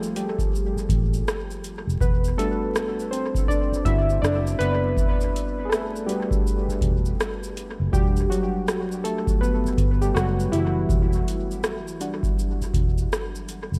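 Melancholic and reflective, this lo-fi hip hop excerpt settles into a swung sixteenth-note groove under a soft haze of vinyl crackle. Detuned sawtooth analog keys take the lead from the first moment, sitting up front with a mellow, chorused tone, a fast attack that decays, and a low-pass filter sweep trailed by dub echo as they move from Gm9 to a lingering Em9 at 2.0 seconds. A booming analog drum machine plays alongside them, its deep kick, metallic hi-hats, rim clicks and shaker re-recorded in a small room and also echoed in dub fashion. At 0.8 seconds a vintage muted fingered electric bass joins low in the register, dark, amped and foam-muted with a round body. Light reverb and an echo-heavy mix give the whole short passage a dusty, drifting atmosphere.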